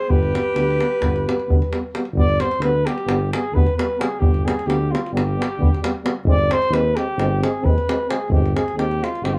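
A warm flugelhorn with light vibrato opens this fiery, bittersweet fragment of Balkan brass band folk in 9/8 at 263 BPM in G phrygian dominant, together with a classical-style alto saxophone second line that stops at 1.9 s, while a clear, smooth-topped euphonium and a softer second euphonium hold background accompaniment, a mellow, punchy tuba carries the bass up front, and a tight, vintage, band-limited davul drives the percussion, all set in a distant, roomy small-room sound over a G chord that shifts to Ab/G at 6.3 s.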